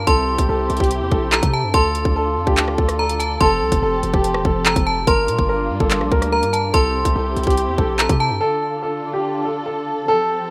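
An up-front drill drum kit of hard-clipped kick, handclaps, rim clicks and metallic hi-hats drives this ominous, tense half-time hip hop excerpt at 144 BPM in D minor, over a punchy, heavy sine 808 bass with a noise layer, a fast attack and a decaying tail. A warm grand piano carries the melody while an inharmonic FM bell, bright with chorus and delay, rings a second line above. A dark, bowed symphonic string section holds lush, woody sul tasto chords with vibrato through C, Dm, Fadd9 and Gm7, and once the drums end at 8.2 seconds and the bass and bell at 8.4 seconds, piano and strings carry on to 10.5 seconds in a rough home demo mix with light reverb.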